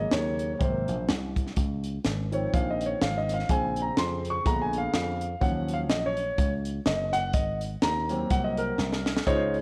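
A concert grand piano takes the lead in this jubilant, soulful uptempo gospel clip, soloing from 0.0 to 9.3 seconds with an intimate, natural tone, deep bass, long sustain and audible action noise. It moves through rich extended harmony, from a rootless Ab7sus4 and Ab9 into Dbmaj7, then Bbm9, Bb7b9 and Ebm9 before landing back on Ab9. Underneath, a dry, thumbed electric slap bass sits up front with a punchy, foam-muted sound and a touch of tube saturation, while an acoustic fusion drum kit with a high-tuned snare, tight kick and hi-hat drives the 125 BPM swung 4/4 groove from a small, pumping room. The drums close with a fill at 8.8 seconds. Light reverb and the worn, warbling pitch drift of old cassette tape give the whole passage a lo-fi patina, and it is cut from a longer piece.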